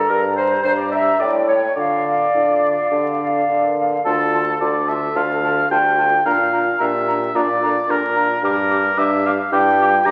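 A quick classical-period wind quintet movement in D minor at 109 BPM, graceful and cheerful, in which a pure concert flute with crisp attack and vibrato carries the melody over a warm, up-front oboe second line, a clear but distant clarinet and a mellow French horn set in the background as accompaniment, and a bassoon with light vibrato sitting forward on the bass, all moving through Gm, A7, Dm and Bb in a wet recital-hall reverb beneath the crackle of a very old 78 rpm record.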